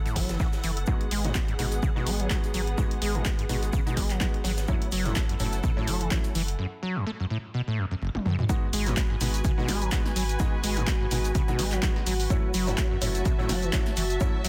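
Driving and raw, this acid house excerpt runs at 126 BPM in 4/4 with a swung sixteenth feel in G# phrygian, built on an up-front punchy electronic kick, a tape-warm analog drum machine of handclaps, hats, shaker, snare and toms, a background acoustic kit with a high-tuned snare, and a deep triangle sub bass under a squelchy, resonant sawtooth acid riff treated with overdrive, chorus and dub echo. Natural-sounding baby grand stabs with dub echo enter at 0.9 seconds, while a distant, smooth bowed string section lends symphonic texture, and much of the mix pumps to the kick. After a break with a drum fill, the drop lands at 8.5 seconds on G#m7, and a moody, detuned analog pad slips in behind at 9.4 seconds, all within a dense, heavily limited small-room sound.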